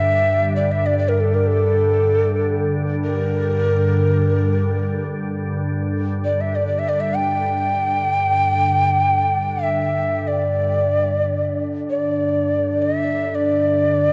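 Unfolding in free time, this haunting, meditative world piece in G kumoi sets a breathy, hollow cedar flute melody with crisp chiff and vibrato over a calm, detuned organ-like drone thickened by ensemble chorus, while a glassy, ethereal glass harmonica enters at 11.3 seconds, all washed in a dark cathedral reverb in this excerpt from a longer work.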